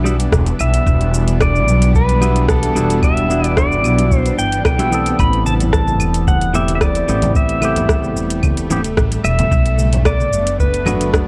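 A dark, smooth production with light digital ambience opens this short cut from a longer sunset chillout piece, moving at 111 BPM in 4/4 with a gentle sixteenth-note swing over Em7, Am7 and Bm7. An up-front upright bass gives woody, thumpy pizzicato from the start. A bright, twangy clean electric guitar carries the accompaniment through gritty vintage sampler texture and delay, while a shimmering, ethereal pad sits in the background with detuned, warbling chorus and its own reverb. A deep analog-style electronic kick and a layered deep house kit of claves, metallic hi-hat, rim click and shaker, with overdrive on the kit, shape the groove. From 0.6 seconds a pedal steel guitar sings the melody with fingerpicked slide phrases, volume swells and delay. Ringing congas struck with hard hands join in the background at 5.5 seconds, adding a small-room acoustic touch to the warm mood.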